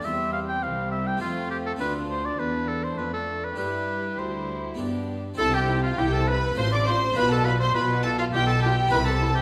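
Set in a straight 3/4 at 102 BPM, this festive, lively baroque-style concerto movement in C major is cut from a longer piece and tuned to A4 = 437 Hz. A clear oboe sits up front as the soloist, carrying the melody with light vibrato while a chamber violin section also carries the melody and a second violin section plays a supporting line, both with gut-string tone and a smooth top. A dark, distant viola section and a full Flemish-style harpsichord fill in the accompaniment from the background, and a close, reedy cello section anchors the bass. The double bass section enters at 5.4 s as the music moves into its second section, deepening the low end. The harmony moves from C/E through F, Dm, Gsus4 and G before returning to C and pressing on through F/A to G7/B, and the whole ensemble sounds in a wet recital hall.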